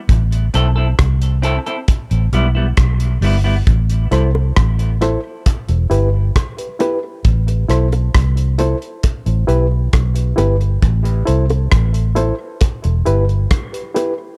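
Dub reggae in A minor at 67 BPM, heavy and spacious, cut from a longer piece: a round, foam-muted vintage bass and a thuddy, cloth-damped drum kit with tight kick, hi-hat and rim click sit up front over an Am–Em change, while a clean semi-hollow guitar with tape echo appears only from 0.5 to 3.5 seconds before a reedy, worn, slightly out-of-tune electric piano enters with stabs at 4.1 seconds alongside soft, high-tuned bongos in the background, both also carrying tape echo, all within a dark studio reverb.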